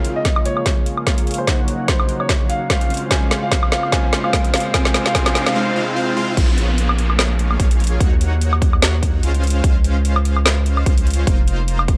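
A dark, lightly reverberant future bass passage in Bb minor at 147 BPM with a half-time, swung feel, emotional and lush, opens on a build-up where a long-sustaining concert grand piano melody with delay and pumping sidechain rides over mellow tine electric piano chords, a very quiet shimmering ethereal pad, a detuned sawtooth supersaw stab riff under a filter sweep and dub echo, a trap kit with woody snare and metallic hats, a punchy up-front electronic kick, and faint risers and noise sweeps, until the drop at 6.4 seconds brings in a deep, thick, saturated sub bass beneath the stabs and drums.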